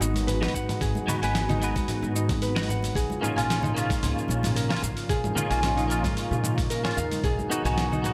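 Mystical and earthy, this organic downtempo piece moves at 112 BPM in 4/4 with a light 16th-note swing, passing through G#m7, A#m and B. A mellow, ringing Celtic harp plays fingerpicked arpeggios through digital delay, a bright, twangy clean electric guitar adds picked accompaniment with chorus and delay, and a smooth, warbling vintage analog pad sustains chords in the background, with the guitar, pad and woody pizzicato upright bass all pulsing under sidechain pumping. A gritty, overdriven sampler-style drum kit with a fat snare, hi-hat, shaker and toms sits alongside background bongos and congas, and a thumpy overdriven electronic kick enters at 0.5 s, all within a light reverb and digital ambience.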